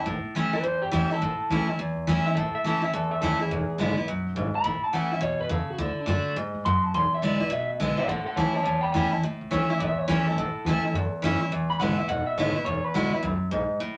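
Upbeat and rowdy, this swinging rockabilly clip, cut from a longer piece, rolls along at a quick clip in 4/4 with a moderate swing in the eighth notes. A bright, full-bodied jumbo acoustic guitar sits up front, picking out the accompaniment through changes on A, E7 and D. The melody comes from a twangy, slightly broken-up electric guitar played through a small old amp, which drops out at 13.2 seconds. Underneath, a pizzicato upright bass with gut strings adds a dark, woody, thumpy low end, sitting lower in the mix than the guitars. A fresh section arrives at 9.2 seconds, and a moderate studio reverb gives the trio a sense of shared space.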